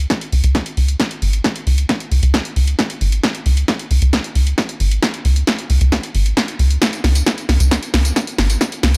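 The recording has a dark, warm sound with little reverb, and its overdriven drums carry the air of a large room. This short cut from a longer uplifting trance track feels bittersweet and emotional, and it sits in straight 4/4 as one continuous build-up that doubles as a drum fill. A tight sequencer bass drives from 0.0 seconds, sitting up front between G#1 and C#2. Its sawtooth and square tones have a fast-attack filter pluck that decays into a mellow tail, and sidechain pumping makes it breathe. From 0.1 seconds, an analog drum machine brings an up-front, punchy snare, hi-hat and tambourine, all with overdrive. Beneath it, a lower-level electronic kick adds gritty thump, with high-pass filtering on both the kick and its roomy re-recording.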